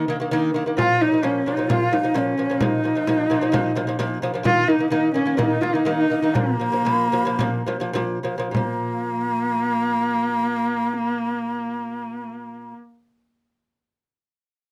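A clear, husky horsehead fiddle carries the melody up front in this windswept, vast Mongolian folk piece, its bowed horsehair strings singing with vibrato and portamento at 98-131 BPM in a straight 4/4 that slows between 4.5 and 8.5 seconds. Alongside it, a breathy low bamboo xiao sings a soft-attacked second line, and a delicate fingerpicked lute with nylon double strings spins arpeggios. A small, bright frame drum struck with hard hands joins at 0.8 seconds and stops at 8.8 seconds, all captured in a dry, close 1970s-style studio booth and cut from a longer piece.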